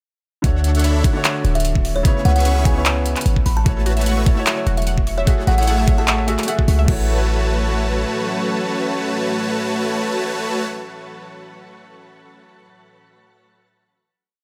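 A lush, playful future bass piece opens at 0.4 s straight into a half-time drop: bright, detuned supersaw stabs throb in tempo over a deep, boomy 808-style bass that glides through long notes, both pumping with the sidechain, while a knocking electronic kick sits up front beside a trap kit of claps, metallic hats with rolls, and crash. A clear baby grand piano holds spread chords with syncopated pushes, roughened by vintage 12-bit sampler grit and tape echo. Meanwhile, a woody kalimba rings short, soft phrases through digital delay, an ethereal pad with chorus and phaser sits in the background, and a punchy, ring-modulated unison pluck runs a 16-step arpeggio behind them. The beat falls away around 7.0 s and the bass follows shortly after, leaving the supersaws, pad and piano to sustain a final A6 chord in a digital ambience, with the piano lingering alone until 12.6 s.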